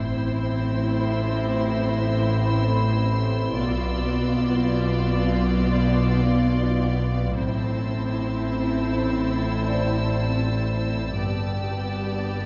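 Softened by a moderate scoring-stage reverb and a muted top end, this tense, eerie suspense cue, cut from a longer film score, moves at 79 BPM in 5/4 in A minor over Am, Bdim and G: a floating, pure violin section carries the sul tasto melody over a dark, woody second violin line with vibrato and a rich, close viola accompaniment, while a bowed double bass section with vibrato and a soft-attack cello section in the background anchor the low end alongside a nasal, evolving analog drone with chorus, a distant high violin texture hovers above, and a mellow, ringing vibraphone played with soft mallets joins at 2.5 s.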